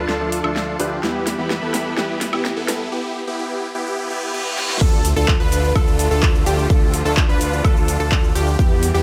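A punchy, overdriven electronic kick sits up front once the drop lands at 4.8 seconds in this emotional, anthemic slice of festival progressive house, cut from a longer piece and moving in a straight 4/4 at 127 BPM over Dm and Em chords. Before that point, a build-up rises on a filter sweep through huge, lush, detuned supersaw chords playing a riff with dub echo. A gritty big-room kit runs throughout with a massive snare, metallic hats, handclaps, cabasa, woodblock and crash, and its fills drive toward the drop. Underneath, a thick sawtooth bass holds the low end while a clear, bowed string section sustains chords in the background. An intimate grand piano with audible action noise adds accompaniment until 2.8 seconds, and background sound effects bring a riser from 1.9 seconds, a reverse cymbal and a sub drop. At the drop, a catchy plucky unison lead with subtle chorus, vibrato and dub echo takes up arpeggios. 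Sidechain pumping gives most of the melodic parts a breathing lift, all set in light reverb and digital ambience.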